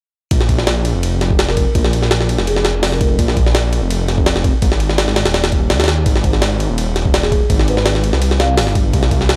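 This is a dry, gritty hardware recording with barely any reverb: a raw, dark drum and bass fragment in jungle style, cut from a longer piece and sitting squarely in the drop. Sampler-style jungle drums sit up front, compressed and pitched up, with a thumpy kick, a high-tuned snare, hi-hat and ride cymbal, all tape-warm and re-recorded in a large room. Alongside them, a thick, menacing detuned saw bass carries beating, saturated low end, its sustained tone blending sawtooth, square and sine with a fast attack and a touch of tube saturation. Around 1.5 seconds a soft-mallet marimba drifts in from the background, round and smooth, its melody trailing dub echo before it returns near the end. The contrast between the mellow marimba and the heavy bass and drums gives the passage its brooding edge.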